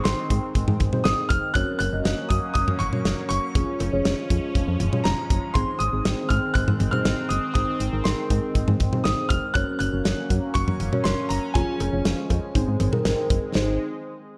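Nostalgic and upbeat, this 120 BPM synth-pop excerpt in Ab mixolydian carries a clear, intimate grand piano melody with audible action noise, dressed in lush chorus and digital delay, over muted felt-like synth keys with phaser, a sweeping, resonant pad of detuned sawtooth, a round, dark FM bass, and an up-front modern studio drum kit of punchy kick, snare, toms, hi-hat and cowbell under gated reverb, the whole mix sitting in a moderate hall reverb with bright 1980s-style digital production.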